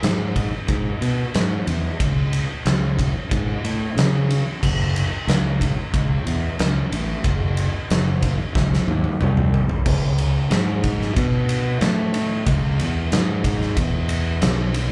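At 92 BPM in a straight 4/4, this stoner and doom metal excerpt in C# minor rolls along with a hypnotic, sludgy heaviness, carried by an oversized, low-tuned drum kit whose boomy kick, fat snare, dark cymbals and toms sit up front with a saturated, gritty, pumping room sound. A fingered electric bass, overdriven into a growly, punchy fuzz, holds down the low end from F#1 to C#3 alongside the drums throughout. A drum fill from 8.6 to 9.9 seconds leads into a new section, all heard as a live gig through the club's PA.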